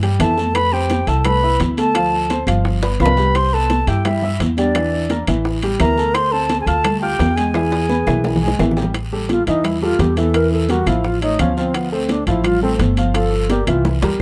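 In a lightly reverberant, intimate sound, this sultry, sophisticated Afro-Cuban jazz in A minor moves at 171 BPM: a crisp, pure concert flute with slapback echo carries the melody until 8.6 seconds, while a vibrato-rich alto flute plays a second line from the start and takes a solo at 8.9 seconds, set over a warm grand piano with audible action noise, a dark, thumpy gut-string upright bass up front, ringing metal-shell timbales, bright high-tuned congas and round low-tuned bongos in the background, very quiet woody claves, a raspy guiro, and brief drum fills.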